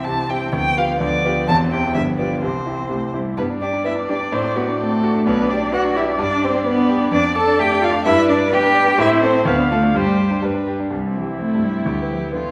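A lively, cheerful classical-period movement for piano quartet moves at a quick 128 BPM in a straight 2/4, in C major, turning to G major at 3.4 s and back to C major at 7.1 s, heard as a cut from a longer piece. A bright, up-front grand piano supplies brilliant accompaniment beneath a distant, veiled violin melody played con sordino with vibrato. A dark, muted viola fills in the harmony while a soft-attacked cello carries a second line with portamento, all set in a recital hall with a wet, 1.6-second reverb.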